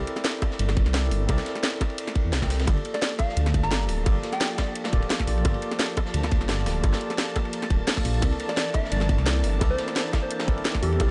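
A small, dull-topped room frames this soulful, dreamy liquid drum and bass excerpt at 173 BPM in G dorian, where a clean tine electric piano with gritty sampler texture and tape echo opens over a tight electronic kick, a cracking garage kit, a saturated breakbeat kit and close, dry high-tuned bongos set farther back, a deep, rumbling detuned saw bass sitting up front, a thick, warbling unison pad pumping in from 2.7 seconds, and a round, keys-like FM lead with chorus and tape echo surfacing at 2.9 and 8.5 seconds.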